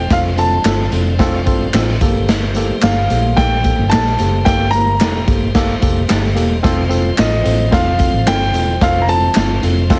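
This uptempo 1960s-style soul excerpt moves at 110 BPM in a straight 4/4, with a passionate, driving mood and the heavily compressed sound of an old radio in a small room. Up front, a clear grand piano carries the melody between Eb5 and Bb5, intimate and natural with audible action noise and long sustain, before it drops out at 9.6 seconds. Beneath it, a worn, slightly out-of-tune tine electric piano comps through its built-in speakers with light overdrive. A piping tonewheel organ with key click and a slow rotary speaker holds chords in the background. The low end comes from a round, foam-muted fingered bass and a saturated, gritty garage kit with a punchy kick and a medium-tuned snare, while close, dry tambourine, maracas and group handclaps add to the groove. From 0.7 seconds a slightly broken-up, lo-fi electric guitar with harmonic tremolo adds picked stabs in the background as the harmony moves from F to Gmadd9 and back to F.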